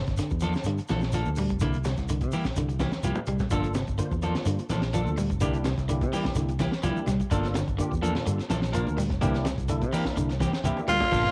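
A slightly broken-up, twangy electric guitar arpeggiates in the background over a round, punchy fingered bass, and the groove of this funky, hypnotic afrobeat excerpt settles in almost at once. A crunchy breakbeat kit with a high-tuned snare, dark cymbals and a saturated, rolled-off top arrives alongside a grainy, close shekere, very quiet low-tuned congas and dark, clean guitar stabs, all riding a lightly swung sixteenth-note feel. At 3.5 seconds a barky tine electric piano, heard through a combo amp with ensemble chorus, joins as accompaniment while the harmony rocks between two chords. Drum fills punctuate the loop, and an electric piano fill leads toward the close, where at 10.9 seconds a raspy, growling tenor saxophone bursts in up front with a very quiet, edgy alto beneath it. The sound has the gritty tape character of a home cassette recording in a small room with light reverb.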